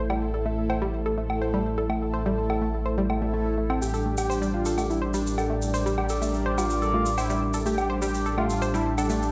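A dark, melancholic melodic techno excerpt opens on a rumbling detuned saw bass up front, brassy chorused pad stabs trailed by digital delay, a round analog pluck arpeggio moving through a filter sweep, and an evolving, resonant pad with phaser in the background, joined at 0.1 s by an overdriven, layered woodblock, before a thick unison lead with vibrato and cassette-tape colour and a grainy, distant egg shaker enter at 3.8 s, the whole mix sitting in moderate plate reverb with a bright 1980s-style digital sheen.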